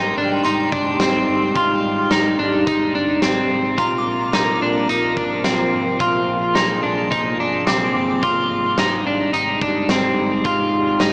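Drums enter at 0.4 s with a straight 4/4 pulse at 108 BPM, a huge arena kit of hi-hat, punchy kick and medium-tuned snare in a big, natural room, beneath a blissful, floating dream pop passage in Ab lydian that moves from Abmaj7 to Bbsus2 and back, cut from a longer piece. A slightly broken-up electric guitar sits up front with compressed, picked arpeggios through subtle chorus and digital delay, while a warbly, nostalgic tape-like pad holds detuned sawtooth-and-triangle chords softened by chorus, phaser and its own reverb, and a dark, foam-muted fingered bass stays low and round. A shimmering FM bell glints in the background with ensemble chorus and delay until 8.5 s, and the whole mix is steeped in a huge ambient reverb yet heard through a small-speaker frame.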